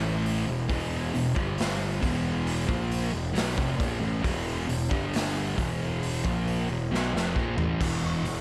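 Hypnotic and heavy, this short cut from a longer stoner and doom metal piece crawls at 68 BPM in a straight 4/4, centred on E minor in E phrygian. A thick, double-tracked fuzz guitar sits up front with a distorted riff, while a growly, overdriven picked bass rumbles low beneath it. The raw garage drum kit enters at 0.3 seconds with a punchy kick, a gritty, saturated sound in a bright stone room, and a drum fill from 6.9 to 7.8 seconds, all under a light reverb.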